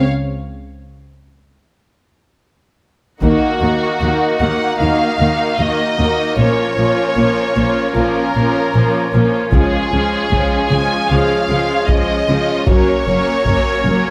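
Epic orchestral film score cut from a longer piece, heroic in mood, where lush, up-front violins carry the melody over a dark second violin line, vibrato-rich violas and smooth-topped French horn chords during an opening break, until at 3.2 seconds warm woodwind chords, focused cellos and double basses, and heavy-stick taiko drums join, the taiko returning at 9.5 seconds, set in a moderate scoring-stage reverb.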